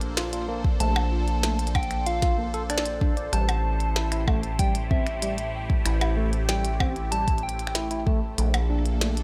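A rubbery, resonant acid bass sits up front in this intricate, glitchy IDM passage, cut from a longer piece, its dark square-wave tone thickened by tube saturation and shaped by a filter sweep. A deep electronic kick joins at 0.6 s, while a produced glitch kit scatters finger snaps, clicky hats, percussion blips and a tiny snare through studio reverb. A detuned sawtooth analog pad swirls and evolves under phaser and chorus, holding sustained chords that move from Bbmaj7 to Am7 and back. A clean, direct tine electric piano spins arpeggios roughened by 12-bit sampler grit and dub echo, and a round FM lead with a gentle, keys-like strike warbles a high melody through chorus, vibrato and delay. The room is dry, in a straight 4/4 metre.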